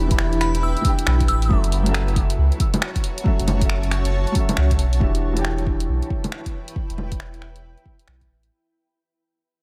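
A swung 4/4 future garage groove drives this melancholic, ghostly excerpt: a deep, layered electronic kick and a small-room deep house kit of bongos, finger snaps and hi-hat ride over a round, up-front dub sub bass that pumps with the sidechain. A felt-muted upright piano, intimate and mellow, adds pumping, delayed accompaniment until 6.8 s beneath a cloudy, evolving granular pad with its own reverb, while a crystalline FM synth bell with chorus and delay offers a brief melody from 0.4 s to 1.6 s. The chords move from Em7 to F#m7 and back to Em7, and the track fades out from 5.0 s within a light digital ambience.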